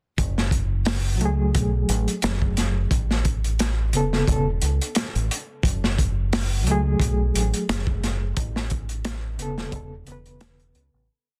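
A crunchy, gritty looped breakbeat with a punchy kick and a round, dark dub-style fingered bass line with tube saturation open this brooding, cinematic trip hop piece at 0.2 s, joined at 1.2 s by a reedy electric piano playing sparse echoing chord stabs through tremolo, a low-pass filter and tape echo, in a dry, dense, heavily limited mix that fades out from 7.5 s.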